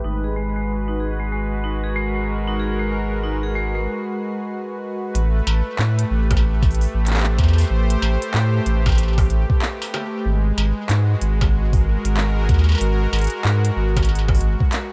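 A round, deep analog bass sits up front through this intricate, melancholic IDM passage at 94 BPM, its sine-like tone holding low beneath a sawtooth pad of detuned, sustained chords treated with chorus, tremolo and shimmer reverb. In the opening seconds a hard-mallet vibraphone rings out metallic arpeggios with slow motor vibrato, tape echo and shimmer reverb, stopping at 3.9 s as a filter sweep carries the opening into a brief break. At 5.2 s the harmony moves from G#m9 to Am9 and an industrial drum kit enters with crisp, filtered hats, handclaps and struck metal under tape echo, swung on the sixteenths. A gritty, pitched-up electronic kick joins at 6.3 s with a compressed, thumpy punch, and the chords return to G#m9 toward the close. Light reverb and a dark, low-passed production give this fragment of a longer piece a hazy, tape-softened glow.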